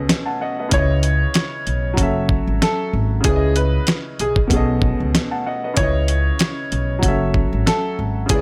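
A swung boom-bap hip-hop groove at 95 BPM in C# minor rides a dusty, sampler-style drum kit of hi-hat, thumpy kick and fat snare, overdriven and compressed up front, beside a woody, pizzicato upright bass, in this gritty, moody excerpt cut from a longer piece. A clear, natural upright piano filtered at both ends plays accompaniment through ninth and thirteenth chords from the start. At 0.7 seconds a bright, worn and slightly detuned upright piano enters with a long-sustaining melody colored by tape echo, all set in studio ambience.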